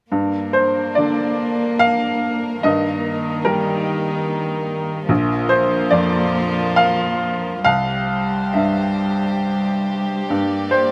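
A short cut from a longer neoclassical piece opens with upright piano, cello and a chamber string section sounding together in a longing, reflective G minor passage, moving in a rubato 3/4 at roughly 67-74 BPM. The bright, woody piano sits up front as accompaniment, while a single bowed cello, sul tasto and distant with tape echo, carries a floating second line, and the intimate strings hold sustained chords with a soft attack and light vibrato. Close, detailed microphones and light reverb frame the harmony as it moves from Gm through Eb/G, Bb and C, returning to Gm at 10.3 seconds.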